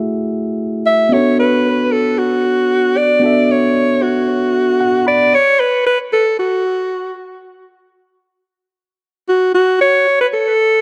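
A straight 4/4 pulse at 114 BPM sets up this soulful, hypnotic amapiano passage, tuned slightly sharp to A4 = 441 Hz and cut from a longer piece. A warm, clean tine electric piano sits up front through a combo amp, laying down F#m7 and then Bm9 chords across the opening section before closing its part with a short fill from 4.5 s. The alto saxophone enters at 0.9 s as the solo melody, its mellow tone carrying gentle vibrato and a smooth top in a pop style, with tape echo trailing its phrases. At 5.3 s the track drops and the chords fall away, leaving the saxophone to carry the hypnotic mood alone. A moderate spring reverb and studio ambience give the echo-heavy mix its sense of space.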